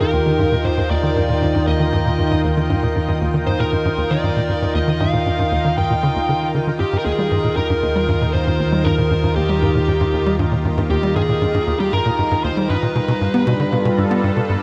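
Cosmic and luminous, this ambient excerpt in Eb major at 117 BPM sets a smooth overdriven lead guitar melody, picked and up front with delay, over a bright, airy resonant pad, a punchy sawtooth sequencer bass riff, and a mellow pulse-width analog drone carrying a filter sweep, all bathed in a moderate shimmer reverb as the Ebadd9 harmony turns to G7 at 13.0 seconds.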